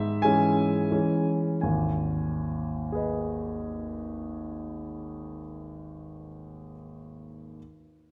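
Dotted rhythms in a rubato triple-time lilt shape this brief romantic classical dance excerpt for solo grand piano, whose polished, up-front tone with long sustain rings through a recital hall's generous reverb, slowing over the opening 1.6 seconds before a new section begins, in a nostalgic, capricious mood.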